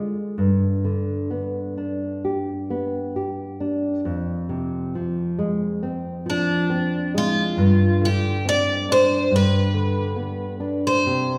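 Mournful and passionate, this short fado-style ballad moves with uneven, rubato beats in 4/4. A nylon-string guitar carries the accompaniment from the start, its thumb-plucked bass and fresh strings giving a deep classical tone placed up front. At 6.3 seconds a picked twelve-string acoustic guitar enters with the melody, its octave-doubled notes shimmering and audible finger squeaks adding intimacy. The harmony drifts from G to F minor, then settles through Gsus4 back to G. Both guitars sit in a wet recital-hall reverb that suggests a church or concert hall, and the excerpt is cut from a longer piece.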